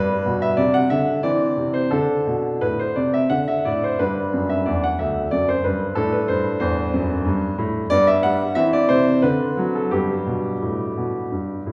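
In a flexible three-beat rubato, this elegant, playful classical-period sonatina is played on a solo concert grand piano with a brilliant tone and deep bass, spanning D2 to F#5. Simple tonic, subdominant and dominant harmonies return to G at 7.9 seconds and settle there again at 9.9 seconds. The piano is heard from further back in a reverberant recital hall, and the passage is cut from a longer piece, ending at 11.7 seconds.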